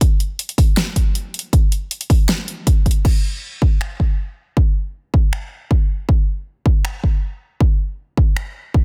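A dense, heavily limited modern master wrapped in digital ambience frames this short future bass cut, taken from a longer piece and running at 158 BPM in 4/4 with a half-time feel. The mood is lush and playful, and the clip opens on a drop that lasts until 3.0 seconds before shifting into a new section that carries on to the end. A punchy, layered electronic kick drum sits up front and drives the whole stretch, playing from the start until 8.8 seconds. Beneath it, a produced pop drum kit supplies crash cymbal, finger snaps, bright hi-hats and a fat snare given an edge by soft clipping, stopping a little earlier at 8.4 seconds. The kick is the most prominent element, while the kit sits further back in the mix.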